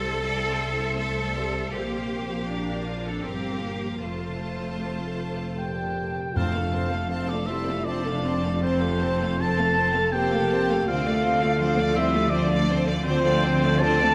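Bathed in a wet scoring-stage reverb, this tender, moving film-score excerpt unfolds in a rubato 3/4, with a smooth, rich violin section singing the melody above a second violin line, expressive viola accompaniment with portamento, focused cellos, even double basses and ringing, fingerpicked harp arpeggios. At 5.6 seconds a distant solo French horn takes up the melody, while a smooth-topped oboe and a pure, mellow flute ensemble add a second line over dark, roomy French horn section chords. Round, soft-mallet timpani sound briefly at 6.4 seconds.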